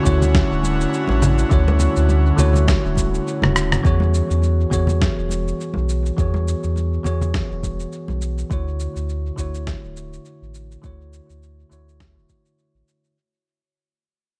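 The recording is drenched in echo, with light reverb and a digital ambience around a relaxed, warm sunset chillout groove with a gentle swing. A bell-like tine electric piano carries the accompaniment, its clean tone softened by a low-pass filter and trailed by tape echo. An airy, breathy pad with chorus holds soft sustained chords until 3.8 seconds. Underneath, a round sine sub bass sits up front, joined by a deep, layered electronic kick drum and a gritty, sampler-style kit of electronic cabasa, fat snare, congas and rim click, both treated with studio reverb. Very quiet acoustic congas and bongos played with soft hands add a bright touch until 8.2 seconds, while the kick drops out briefly for a drum fill just before the harmony shifts, after which this cut from a longer piece fades out.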